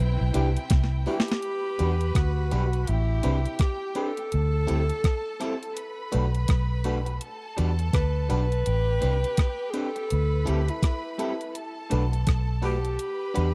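Swung sixteenths drive this smooth, longing lovers rock reggae groove in E minor at 83 BPM, anchored by a dark, round, foam-muted fingered bass up front and an overdriven 8-bit drum machine with a thumpy kick that enters at 0.3 seconds and plays a short fill before 1.4 seconds. A breathy, whispered alto saxophone with tape echo carries the melody over a bowed studio string section with vibrato, while a glassy, bell-like FM electric piano with chorus adds accompaniment and a slightly broken-up electric guitar with spring reverb plays stabs in the background. The dry, close sound recalls a 1970s studio, and the passage is cut from a longer piece.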